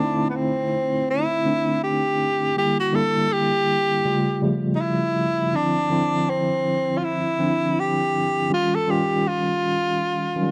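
Swung sixteenths at a relaxed 81 BPM in 4/4 carry this romantic, smooth soul passage in C major, where a breathy, whispered tenor saxophone sings an intimate, jazz-style solo melody with vibrato, soft attacks and scooped notes over a worn, slightly out-of-tune tine electric piano, clean with medium tremolo through a combo amp, both up front in a dry, close 1970s-style studio sound as the chords move from C69 through Em7b5, A7b13 and Dm9 to Eb9 at 8.5 seconds.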